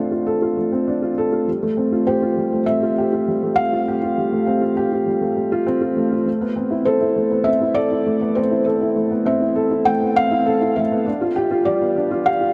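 Intimate and cinematic, this electronica fragment moves at 100 BPM in a straight 4/4, tuned to A4 = 439 Hz, with chords passing from Dm7 through Fadd9 and Amadd9 to G7. A dark, woody upright piano sits up front playing a riff through digital delay, and at 2.1 seconds a felt-muted upright piano enters above it with a soft, thick-felted melody, its action noise audible. A huge ambient reverb bathes the sound, and a build-up begins at 6.3 seconds and runs to the end of the cut.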